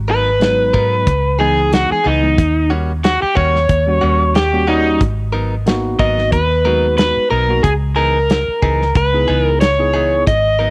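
This short excerpt of straight-eighth soul blues sits in a small room with light reverb, giving it a close, smoky character. Up front, a bright, crunchy overdriven guitar carries the melody, taking a picked solo through the opening five seconds before the second section begins at 5.0 seconds. Beneath it, a dark, round vintage electric bass, foam-muted, amped and punchy, anchors the low end, while a warm acoustic soul kit of tight kick, medium-tuned snare and hi-hat keeps a rolled-off top. A clean, compressed electric guitar recorded direct adds quieter picked stabs, and a tine electric piano played through a combo amp fills in the accompaniment. The harmony moves between minor ninth chords and a dominant seventh sharp-nine chord, lending the groove a soulful, late-night mood.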